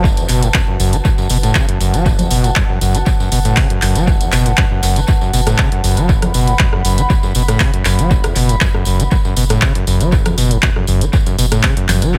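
A straight 4/4 pulse at 119 BPM drives this trippy, gritty acid house passage in F# minor, cut from a longer piece and resting on a single F#m chord. A punchy electronic kick, re-recorded in a large room, anchors the groove, while an overdriven analog drum machine adds congas, handclaps, hi-hat and rim click through analog delay, joined by a close, dry, jingly tambourine. Up front, a squelchy, resonant sawtooth acid bass plays the riff between F#1 and F#3, distorted and shaped by a filter sweep, sidechain pumping and dub echo. Beneath it sits a deep, round sine sub bass fixed on F#1 that also pumps. Lower in the mix, a warbling, nostalgic lo-fi pad spans F#4 to B5 with a slow attack, long release, chorus and its own reverb, giving a mellow haze to an echo-heavy mix finished with light reverb and digital ambience.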